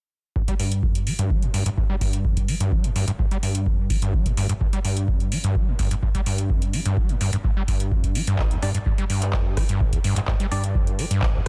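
A squelchy, overdriven acid bass sits up front from 0.4 seconds, its resonant sawtooth riff running from G1 to G3 through distortion, cassette tape grit and dub echo while a filter sweep works across the whole passage. This is gritty, trippy acid house at 127 BPM in a straight 4/4, cut from a longer piece and built over a G5 chord. A deep analog kick drives the groove alongside an electro drum machine supplying handclaps, rim clicks and metallic hi-hats, both re-recorded in a small room. At 8.6 seconds a hollow, percussive organ stab enters, its mellow sine-and-triangle tone with a noise layer treated with subtle chorus and dub echo, ringing between D4 and D5 until 10.6 seconds. Light reverb surrounds a dense, heavily limited modern master.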